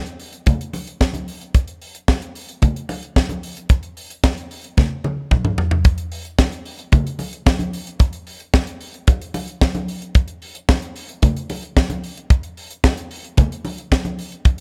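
A straight 4/4 disco groove at 112 BPM drives this glamorous, cut-down passage. Its spine is an up-front, dry, polished funk drum kit with a tight kick, a high-tuned snare, hi-hat and toms, joined at 0.5 s by thick-skinned, compressed, saturated congas played with hard hands. A drum fill from 4.8 s carries into a new section at 5.8 s, all in a close sound with little reverb.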